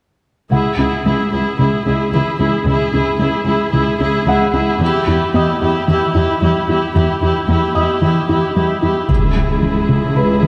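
A focused, vibrato-rich viola section sits up front in this brooding, futuristic cinematic excerpt in C# minor at 112 BPM, carrying the accompaniment over a lush, smooth cello section holding the bass while a soft, round synth pluck spins chorused, delayed arpeggios in the background. A felt-muted upright piano with audible action noise adds an intimate, delayed texture high above, the whole set in a wet concert hall, as the harmony moves from C#m to Em at 4.8 seconds. At 9.1 seconds the chord returns to C#m and a huge, bright impact hits, opening a new section.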